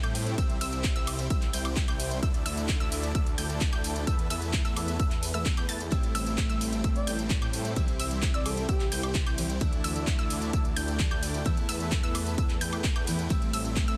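A dense, heavily limited modern master with light reverb frames this emotional, anthemic slice of festival progressive house at 130 BPM in A minor, cycling through C, Dsus2, Esus4 and Am7. A punchy, up-front electronic kick enters at 0.4 s over a house kit of handclaps, metallic hi-hats, ride, tambourine and woodblock, while a menacing, beating detuned saw bass, a huge supersaw riff with delay sitting in the background, lush unison pluck arpeggios high in the register, and smooth bowed strings holding sustained chords all pump against the sidechain. A picked steel-string acoustic guitar with audible finger squeak joins at 5.9 s, and at 7.0 s a breathy, flute-like synth lead with chorus, tremolo, vibrato and 12-bit sampler grit carries a brief melody.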